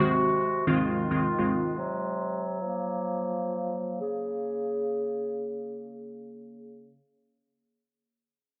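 Glassy, detuned digital keys with a chorused shimmer and a filter sweep open this mellow, smooth afrobeats fragment in Bb minor at 108 BPM with a swung 16th feel, playing accompaniment only until 1.5 s, while a warm woodwind section with light vibrato holds sustained, classical-style chords through Ab7, Fm7 and Gbmaj7 to a closing Bbm7 until 7.0 s, all within a lush hall reverb.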